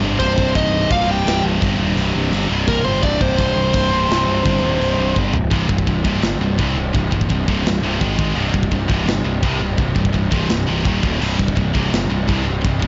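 A growly, fuzzed picked bass anchors this relentless, aggressive heavy metal excerpt in C minor at 169 BPM, with a smooth overdriven lead guitar carrying a tape-echoed melody over a very quiet high-gain second line until 5.2 s, while two bright high-gain rhythm guitars and a faint double-tracked distorted guitar grind out the riff, and a big-room acoustic kit with china, crash, toms, a medium-tuned snare and a clipped kick plays half time before a drum fill at 5.2 s, all in a dry, blown-out, overdriven mix.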